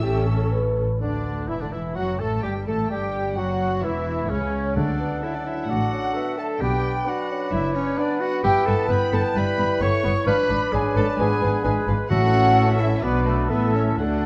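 A cheerful, spirited classical-period movement for symphony orchestra, heard with rubato in a moderate recital hall, where veiled, muted violin sections carry a very quiet melody and a second line over muted violas, a lush cello section and an up-front double bass section, mellow horns hold sustained chords, and from 1.0 s a clear clarinet, a pure-toned flute ensemble and a mellow oboe add further lines while a bassoon accompanies and a distant trumpet adds soft stabs, with round, soft-mallet timpani strokes at 4.8 s and 12.1 s.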